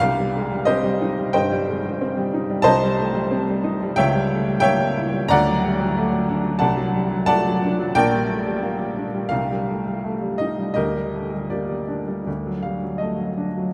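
Bittersweet and passionate, this romantic classical character piece for solo piano moves in a rubato 4/4 at around 78-94 BPM, its upright piano sounding clear, woody and intimate up front with audible action noise and short sustain, spanning Bb1 to Bb5 through a harmony that drifts from Cm through a diminished chord to D and D7 before settling toward Gm and back to D, all set in a vast, echoing cathedral reverb in this 13.7-second passage cut from a longer work.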